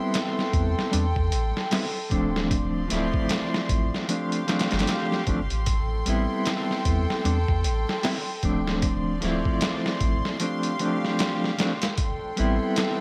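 A dry, vinyl-crackled, brooding and smoky trip hop fragment in which a dark, fingered electric guitar with tremolo, 12-bit sampler grit and tape echo sits up front over reedy, gut-toned chamber strings holding sustained chords, a muffled, pitched-down sampler drum kit with a thumpy kick, a deep, round dub sub bass with tube saturation entering at 0.5 seconds, and the kick dropping out from 10.4 to 12.0 seconds across a swung Am7–Dm7–G7sus4 cycle.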